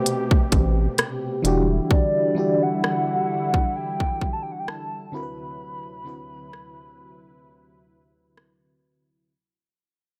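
Contemporary R&B at a slow 65 BPM in 4/4, with a gentle sixteenth-note swing and a sensual, longing mood, this short cut from a longer piece moves through Am9, Em9 and D13 chords. A hollow, woody clarinet-like synth lead carries the melody in a high register, its soft, warbling vintage tone coloured by vibrato, chorus and digital delay, sitting up front. Beneath it, a dark FM electric piano with tremolo supplies decaying accompaniment, while a smooth, detuned analog pad with chorus holds sustained chords. A trap drum kit with a hard-clipped kick, crisp hats and rim clicks drives the groove from 0.1 seconds, and a rubbery, bouncy square bass adds a nasal, filter-plucked low end only briefly near the start, alongside a very quiet downlifter effect in the opening seconds. The whole passage fades out, with a break from 5.6 seconds, and the mix stays dry and close.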